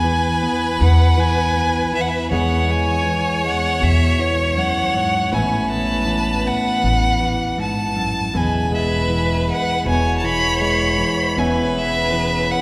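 Intimate and tender, this excerpt of an acoustic folk-pop ballad in E major moves at a straight 80 BPM, with a clear, up-front bowed violin singing the vibrato melody over a distant, intense second violin line, a bright, compressed clean electric guitar picking accompaniment through spring reverb, and a woody, growly pizzicato upright bass, while a reedy, breathing pedal harmonium slips in behind them at 8.3 seconds, all bathed in the long reverb of a church or concert hall.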